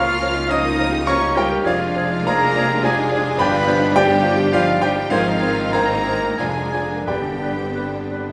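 A clear, intimate grand piano leads this brief romantic excerpt for piano and orchestra, sitting up front with its action noise audible as it carries the melody across a broad span from Db2 to F6. The mood is tragic and brooding, in 3/4 with a rubato feel that drifts between 84 and 109 BPM, moving through Bbm/Db, Ddim/F, G7, Ab6 and Ddim/F again before settling on G. A very quiet, smooth violin section also carries the melody, while second lines come from a mellow, close-miked clarinet, a distant, rich upper violin section, a warm oboe in the background and an airy, bright silver flute that enters at 0.2 seconds. Beneath them, a mellow bassoon and a lush viola section supply accompaniment, a French horn section holds sustained chords, and a roomy, mellow trumpet adds stabs from a distance. A focused double bass section and a lush symphonic cello section anchor the bass, and round, soft-mallet timpani on calf heads join at 7.1 seconds. 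The whole ensemble sits in a wet scoring-stage reverb that lends the sound depth.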